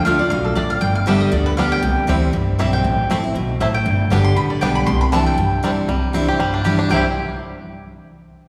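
A full-bodied, up-front picked steel-string acoustic guitar drives this short, virtuosic bluegrass clip in C major at 236 BPM, with a swung eighth-note feel and chords moving from Dm through G, C and Am to a closing Cadd9. A mellow, woody mandolin carries the melody alongside a twangy, percussive banjo entering at 0.1 s, while a dark, thumpy pizzicato upright bass anchors the low end. The driving ensemble sits in a wet concert-hall reverb with a sense of a church or hall space around it.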